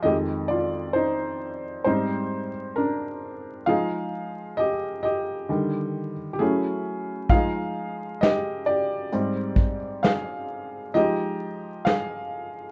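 A mellow, felt-muted upright piano carries this reflective, nostalgic lo-fi hip hop fragment from the first second, its soft, intimate tone softened by cassette tape, a low-pass filter and plate reverb, with audible action noise as it moves through jazzy chords like Fm7, Abmaj9#11 and Gbm9 in F dorian. At 7.3 s a dark, smooth vintage kit played with brushes joins up front, its punchy kick, medium-tuned snare and hi-hat sitting on a relaxed 66 BPM swing until 12.1 s. Vinyl crackle and a small, reverberant room give the whole rough home-demo mix a hazy, lived-in character.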